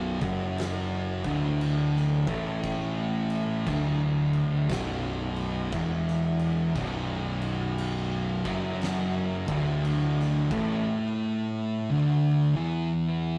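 A rough rehearsal-room recording with tube saturation and light reverb carries this sludgy, brooding stoner and doom metal excerpt in B minor at 58 BPM with a swung 4/4 feel, where two thick fuzz guitars grind out a distorted, picked riff throughout its 13.4 seconds, one up front and warm and the other dark in the background, over a bright, growly overdriven picked bass that stops at 10.9 seconds and an oversized low-tuned acoustic drum kit of boomy kick, fat snare and crash cymbal, gritty and pumping in a stone room, playing from 0.2 seconds.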